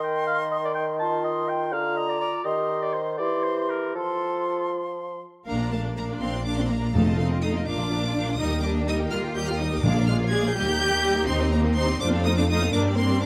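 A quick, graceful classical-period orchestral movement in a lilting 6/8 opens with a cheerful woodwind passage: an airy, silvery flute and a roomy clarinet carry second lines over a mellow bassoon accompaniment, with a distant oboe singing alongside until it drops out just before the others. At 5.5 seconds the winds give way to the strings, where a close, vibrato-rich violin section takes the high melody while a second, more focused violin section plays a supporting line beneath it. A smooth, distant viola section fills in the accompaniment, and the bass is carried by a lightly vibrato cello section with a smooth top and an expressive, up-front double bass section. Timpani struck with medium mallets on calf heads punctuate the string passage at 6.9 and 9.8 seconds. A moderate recital-hall reverb gives the whole ensemble a natural sense of space, and the harmony moves gracefully from a C minor seventh through dominant-seventh turns before the excerpt breaks off mid-phrase.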